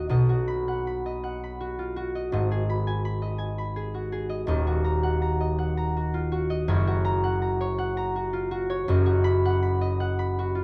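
A dark, warm recital-hall sound with moderate reverb surrounds a solo concert harp, fingerpicked and ringing up front across a broad range in this peaceful, graceful classical excerpt in rubato 3/4, where the harmony moves from B through Abm and Ebm before shifting to F# at 6.7 s.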